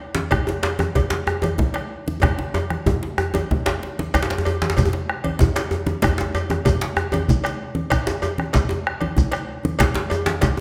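A tight, cracking djembe with metal rattles sits up front, hard-struck, compressed and saturated, in this festive, earthy West African drum ensemble in 12/8 at 126 BPM. Around it play bright, thin-skinned low-tuned congas, a second medium-tuned djembe and a deep, dark bombo further back, plus a metallic, band-limited cowbell, with a drum fill from 2.2 to 4.1 seconds. A grainy, mellow shekere joins at 4.1 seconds, and a recital hall reverb gives the whole group a wet, roomy space in this cut from a longer piece.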